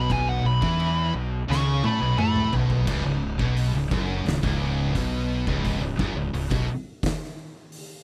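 A dark, compressed fuzz lead guitar solos over two thick fuzz guitars, a bright double-tracked distorted guitar and an up-front overdriven fingered bass, all riffing on a B9sus4 chord, in this sludgy, ominous stoner-doom excerpt at 86 BPM, with an oversized, low-tuned drum kit, its fat snare, punchy kick and dark cymbals saturated and gritty in a bright stone room, joining at 0.1 s and rolling through a fill from 1.5 s before the lead's tape-echoed melody ends at 2.5 s and the harmony drops away at 2.9 s.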